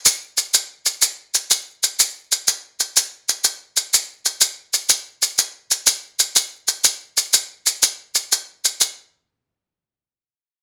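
Southern African traditional music with a rippling, warm mood at 123 BPM in a straight 12/8, where grainy, mellow acoustic maracas sit close, dry and up front in a moderate studio room, playing from 0.1 to 9.0 seconds in this short fragment cut from a longer piece.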